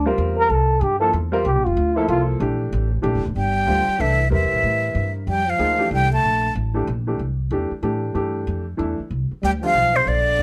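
A breathy, whispered trombone takes the lead to open this hypnotic, spiritual modal jazz excerpt at a brisk 188 BPM swinging waltz in C mixolydian, over thumpy pizzicato upright bass and clear, short-sustained upright piano in a moderate club room, until a close-miked concert flute with plate reverb takes the melody at 3.4 seconds as the chords move between C13, Bb and C69.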